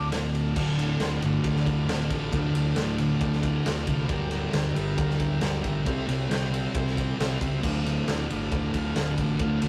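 A rough rehearsal-room recording with tube saturation and light reverb gives this swaggering, raw garage rock excerpt a gritty feel. At 136 BPM in a straight 4/4 and D minor, a double-tracked fuzz guitar sits up front, picking a distorted riff in its low register. An overdriven fingered electric bass plays the bass line underneath with a warm, amped tone. A raw garage drum kit enters at 0.1 s, with a punchy kick, a medium-tuned snare, ride and crash cymbals, and a pumping small-room sound with a rolled-off top. In the background, a vintage overdriven combo organ holds buzzy sustained chords with light vibrato. The harmony moves from Dm to Gm/D at 4.1 s, then to C and back to Dm.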